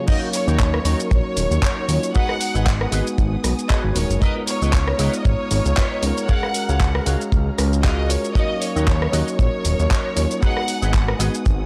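Sunny and feel-good, this nu-disco passage, cut from a longer piece, stays in a full drop throughout with a gently swung sixteenth-note feel. A clear, smooth symphonic violin section carries the melody with vibrato and tape echo. Beneath it, a bell-like tine electric piano plays the accompaniment, and a dark, woody studio string section holds lush sustained chords in the background; both pump against the sidechain. Further back, a twangy, clean electric guitar plays a picked riff through an envelope filter, thickened by ensemble chorus. A dry, tight acoustic kick sits up front alongside a layered electronic pop kit of crash cymbal, handclaps, hi-hat, rim click and shaker, and from 0.5 s a fat, detuned sawtooth analog bass with a filter sweep joins, also up front. The chords cycle through D#m7, G#m7, C#13 and F#maj9/C#, and the mix carries a gritty hardware character with transformer saturation, cassette tape color and small room reverb.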